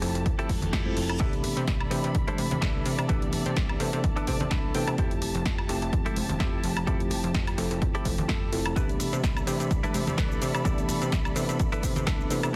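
Filtered disco house at 127 BPM in C major, joyful and sunny, where a worn, slightly out-of-tune tine electric piano with phaser and 12-bit sampler grit plays accompaniment over a plucky, tube-saturated analog bass, veiled muted strings hold sustained chords, and a twangy, bright clean electric guitar plays a riff with fills at 4.0 and 8.1 seconds, these four parts pumping under a low-pass filter, while a punchy layered electronic kick enters at 0.3 seconds over a house kit of hi-hat, snare, shaker and woodblock, very quiet ringing tube shaker and congas add close, dry acoustic color, and a reverse cymbal sounds briefly in the background, all cut from a longer piece with light digital reverb and a dense, heavily limited master.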